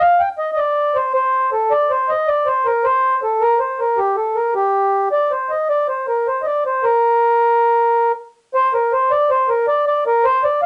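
Recorded at home on cassette, the sound is dulled at the top, with a short, wet studio ambience around it. This is a spirited, driving Celtic folk fragment in 9/8, moving at 106 beats per minute counted in dotted quarters with a straight feel, and tuned slightly sharp to A4 = 441 Hz. A lone, mellow accordion carries everything, placed up front, its reedy, round and airy tone colored by the tape. Its melody stays between G4 and G5. The opening strain runs until 8.5 seconds, when a new section begins, and the fragment is cut off at 10.7 seconds.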